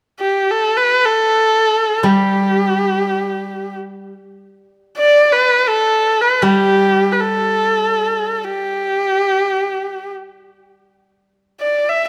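Set in light reverb, this short, festive and graceful passage of Chinese traditional chamber music unfolds in free time in the G gong mode, cut from a longer piece. A close, warm erhu carries the melody up front from 0.2 seconds, bowed by one player with expressive vibrato and portamento between G4 and E5. From 2.0 to 8.5 seconds a steel-string zither, plucked with fingerpicks, adds a silvery, ringing accompaniment on G3.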